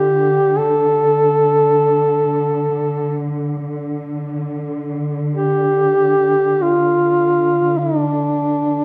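A moderate concert-hall reverb surrounds this short cut from a longer Caucasian folk lament in D minor, unfolding in free time with a mournful, longing mood. Up front, a dark solo duduk carries the melody between D4 and A4, its folk-style line shaped by vibrato and scooped notes. Beneath it, a veiled, con sordino studio string section sustains a bowed, vibrato-tinged drone on D3 throughout the 8.8 seconds.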